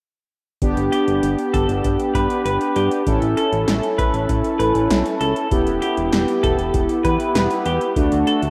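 Nocturnal and melancholic, this 98 BPM synth-pop fragment opens at 0.6 s with up-front, brassy analog synth brass carrying chorus and vibrato, a fat, detuned sawtooth bass, and an overdriven analog drum machine with deep kick, punchy snare and metallic hats, before a bright, twangy twelve-string electric guitar with delay joins at 0.9 s, moving through G, A, Em and D inside a lush hall reverb and a rough home demo mix.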